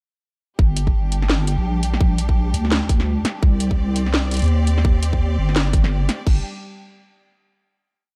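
A deep, wobbling bass sits up front, its long gliding notes given a soft, rounded edge and a shimmer of chorus. This is a whole piece of heavy, tense half-time drum and bass in 4/4, built almost entirely around a drop that arrives at 0.6 seconds and runs until a final G5 chord at 6.3 seconds. A tight electronic kick anchors the sparse half-time beat, joined at 0.8 seconds by a kit of cracking snares, metallic closed hats and a crash. Above them, a bright studio string section holds bowed chords with intense vibrato, moving from Gm to Cmadd9 while sidechain pumping makes it breathe. The production is dark and warm, with little reverb, leaving the bass and kick heavy and forward in the mix.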